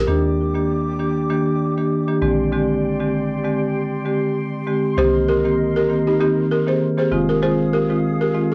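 Sunny, romantic afrobeats with a light swing, cut from a longer piece, where an up-front marimba in dark, smooth tones carries the accompaniment over a deep, round log drum bass with a fast attack, an airy flute ensemble holds sustained chords with vibrato through plate reverb, and a woody, buzzing balafon riff sounds at the start and returns at 5.0 seconds, all captured as a homespun cassette recording.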